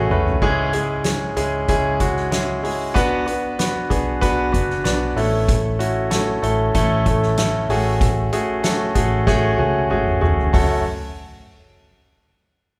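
Piano-driven pop with a driving, dramatic mood, this short passage is cut from a longer piece and moves at a steady, straight pulse. A clear concert grand leads the accompaniment, sounding intimate and up front, with audible action noise, deep bass and a long, polished sustain. Beneath it, a vintage muted fingered electric bass sits low, dark and foam-muted, with a round, punchy tone. A soft-mallet drum kit sounds distant and roomy, with dark cymbals, a fat snare and a punchy kick, opening with a brief fill and adding another from 9.3 to 10.5 seconds. The harmony passes through C#m, Bm, A and F#madd9/A before settling on F#m, and the whole blend rests in a moderate recital-hall reverb that gives it a church or concert-hall sense of space.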